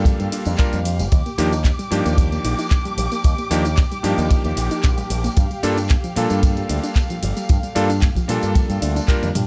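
A bright, clangy electric grand piano opens this nu-disco excerpt at 113 BPM in G minor, its accompaniment roughened by vintage 12-bit sampler grit, a slapback echo and sidechain pumping, alongside muted, veiled violins holding sustained chords con sordino with vibrato. A picked electric bass with an envelope filter and tube saturation anchors the low end, while a soft, round pluck with chorus and tape echo spins gentle, warbling arpeggios in the background. The kick drum sits up front, punchy and polished, beneath a layered electronic pop kit of handclaps, hi-hat, ride cymbal, shaker and toms, with a tambourine tucked far behind in a small room. The harmony moves from Gm7 to Ebmaj7 at 1.1 seconds and back to Gm7 at 5.4 seconds, giving the sensual, lightly swung groove a steady sway. Near the close the band hits an accent at 9.1 seconds and a drum fill follows at 9.2 seconds.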